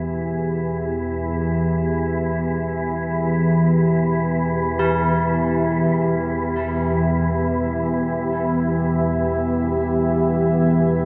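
Drenched in a cavernous cathedral reverb, this ominous, vast dark ambient drone fragment rests on a calm, organ-like low drone and a deep, moody, detuned pad holding sustained chords up front, while an airy, breathy wind-like texture fades in from the background and clangorous, bronze old church bells with tape echo enter at 4.8 seconds to ring out worn, vintage arpeggios.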